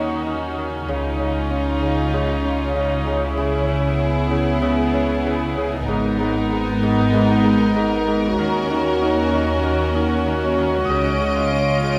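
Set in a straight 4/4 pulse, this ominous, tense cinematic excerpt moves through a brooding minor-leaning chord cycle from start to finish. A dark violin section carries the melody with light vibrato and a soft, sul tasto touch, while a rich, floating viola section sits up front with the accompaniment. A ringing Celtic harp plays a fingerpicked riff underneath, and the low end comes from a woody double bass section in the background, a very quiet cello section and a thick, mellow sub bass drone. A fingerpicked concert harp adds a high texture at the opening, dropping out at 3.9 seconds and returning at 10.8 seconds. A second violin section then enters at 10.9 seconds with a high, smooth-topped texture, and a wet scoring stage reverb lends the intimate, close strings a sense of space.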